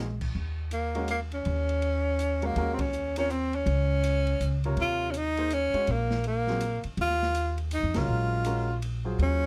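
Modal jazz in Eb dorian at 163 BPM in a swung 3/4, spiritual and searching, cut from a longer piece: a breathy, whispered tenor saxophone with vibrato and scooped notes carries the melody up front over a woody, thumpy pizzicato upright bass on gut strings and a dark, smooth jazz drum kit with a boomy kick, while a clear concert grand piano with deep bass joins the accompaniment at 1.0 seconds and the band hits accents at 2.7 and 7.9 seconds, all under light reverb and close, detailed microphones.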